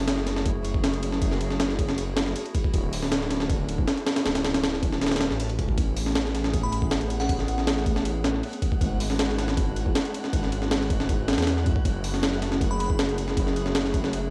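A lightly reverberant, lo-fi home cassette recording carries this dark, frenetic drum and bass cut, lifted from a longer jungle piece at 158 BPM in F# minor. Gritty, compressed and overdriven sampler-style drums sit up front, pitched up, with a thumpy kick, a medium-tuned snare, hi-hat and ride, all re-recorded in a large room. A deep, rumbling detuned saw bass, saturated and beating, sits just as close, while a warbling, nostalgic tape-like pad holds mellow chords in the background through a chorused, cassette-worn haze. The harmony moves from F#m9 through Dmaj9, Amaj9 and E9/G# before returning to F#m9 at 11.8 seconds. From 6.3 seconds, an airy, breathy wind-like noise texture drifts in behind everything, and a glassy, crystalline FM bell adds brief, bright chorused phrases with dub echo at 6.6 and 12.7 seconds.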